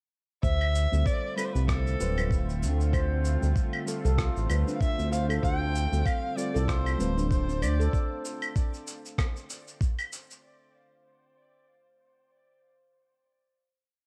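A swung 96 BPM groove in 4/4 starts at 0.4 s with a gritty, thumpy sampler kick and a layered beat of shaker, claves and rim click beneath a syncopated, mellow synth bass riff, setting an earthy organic downtempo mood in D dorian over Dm7. A warm bowed kamancheh carries a smooth, call-like motif with vibrato, portamento and tape echo, while muted felt-like keys place quartal chord stabs with chorus and delay in the background, a tense, string-like detuned drone sustains chords, and an airy handpan arpeggio with digital delay enters at 2.9 s. A very quiet bronze singing bowl holds a metallic high note with slow beating in a dark, dry production that keeps the kick and bass up front, and the percussion and bowl carry on until 10.4 s.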